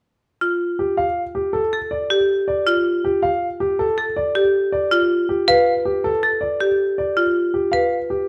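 Close, detailed microphones place both instruments up front in a large studio, with a moderate reverb of 1.3 seconds trailing behind them. This is a short cut from a longer piece of classical minimalist pattern music, bright and hypnotic, moving at 160 BPM in a straight 6/4 in G mixolydian over a single G9 chord. A marimba struck with hard mallets starts at 0.4 seconds, cycling arpeggios between F4 and B4 with a bright, percussive attack. The grand piano joins at 0.8 seconds with a melody between G4 and F5; its tone is warm, intimate and a little boxy, with long sustain and audible action noise from the instrument itself. Both parts carry on together until the marimba stops at 8.0 seconds, and the piano's last note follows at 8.3 seconds.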